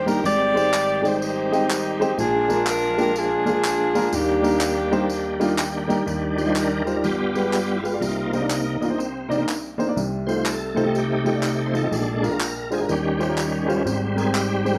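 Swung eighths drive this uptempo gospel piece at 123 BPM in 4/4 and Eb major, with tambourine and handclaps ticking along beneath a natural-toned baby grand piano and a bright, shouting tonewheel organ whose fast rotary speaker, light overdrive and chorus vibrato give its sustained chords a full, gritty glow. A mellow saxophone section carries the jazz-style melody with soft attacks, light vibrato and a slapback echo until 5.6 s. A piano fill at 5.3 s hands off to an organ solo from 6.1 s, moving through rich chords like G7b9, Cm9 and Eb13 inside a dark production with echo-chamber reverb and a small-room ambience that feels uplifting and reverent.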